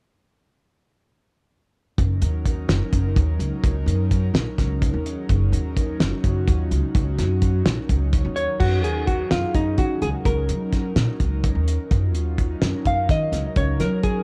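A lightly reverberant home cassette recording of driving, bright progressive instrumental band music in 7/8 at 254 BPM in F# major, cut from a longer piece, where a breathy, detuned pad with chorus, a woody pizzicato upright bass and a cloth-damped, thuddy drum kit with dark cymbals and a fat snare start at 2.0 seconds over an F#6 chord, before a dark, clean hollow-body jazz guitar with analog delay takes the melody from 8.4 seconds.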